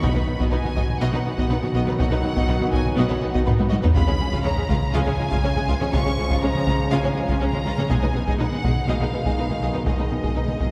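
A cavernous church reverb bathes this vast, futuristic hybrid orchestral-electronic film cue at 122 BPM, where up-front, saturated taiko drums struck with hard sticks drive alongside a lush vibrato violin melody, a second violin line, background violas, mellow trombones and very quiet French horns holding sustained chords, a dark, soft pluck tracing arpeggios, and rich cellos and double basses anchoring the bass over B, Db and Abm/Cb harmonies, with a drum fill at 3.5 seconds in this fragment of a longer piece.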